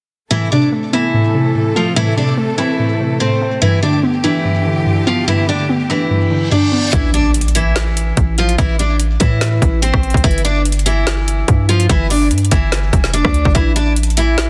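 A dense, heavily limited modern mix with light reverb carries this brooding, eerie half-time trap excerpt at 145 BPM in A minor. It opens on a bright, full-bodied picked steel-string acoustic guitar melody with audible finger squeak, softened by a low-pass filter and digital delay, over a warbling, detuned lo-fi pluck and a lush, bowed symphonic string section holding chords. A reverse cymbal in the background leads into an impact at 6.9 s, where the strings and pluck stop and a boomy, sine-based 808-style bass and an up-front trap kit enter, with a hard-clipped kick, woody snare, metallic hats and rim clicks under the guitar.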